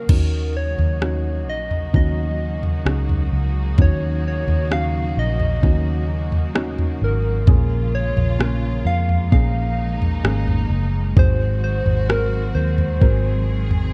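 A slow, straight 4/4 groove from a smooth, electronic R&B drum kit sets the pace of this hopeful, heartfelt pop ballad, with a soft kick, rim clicks, toms and crash cymbal sitting prominently in the mix from 0.1 seconds. A vintage, foam-muted fingered electric bass sits up front, its amped tone dark, round and punchy. A mellow upright piano adds woody, short-sustained accompaniment, while an intimate studio string section holds lush, bowed chords played sul tasto with vibrato and a soft attack. Over them, a gentle, keys-like FM synth lead carries the melody with a fast, decaying attack and a warbling vintage character shaped by chorus and tremolo. The harmony moves from Ebm7 to Bbm7 at 7.5 seconds and Ab7 at 11.2 seconds, and the dry, dark, warm production makes this feel like a passage cut from a longer piece.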